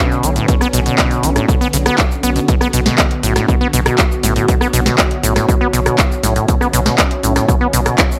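A light reverb and digital ambience surround this short, raw and driving acid house excerpt at 120 BPM in B minor, resting on a single B minor chord throughout. A booming analog drum machine enters at 0.1 seconds, carrying crisp snare, handclaps, metallic hi-hats, rim clicks and cabasa, with a short room on the snare, clap and hats, and a punchy, up-front electronic kick joins at 0.5 seconds. The deep acid bass plays a rubbery, resonant sawtooth riff with a filter sweep, fast attack and tape echo, while a thick, saturated sine sub bass holds a low B through tube saturation. Both basses pump against the sidechain, as does a smooth, detuned sawtooth pad that sits in the background with chorus on sustained chords. Underneath it all, a very quiet, warbling tape-like pad adds a nostalgic, lo-fi texture with its own reverb and chorus.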